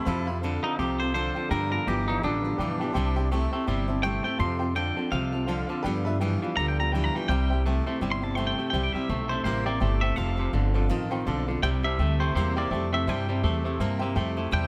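Rockabilly at 166 BPM with a swung, upbeat and rollicking feel in C major, cut from a longer piece, where one twangy, compressed electric guitar carries the melody through spring reverb and tape echo, taking a clean solo until 8.7 seconds, over a second electric guitar's bright low riff, a full-bodied steel-string acoustic guitar with audible finger squeak, a woody, thumpy pizzicato upright bass up front, and a slightly detuned upright piano in the background that adds a brief fill at 14.0 seconds, all in a dry room.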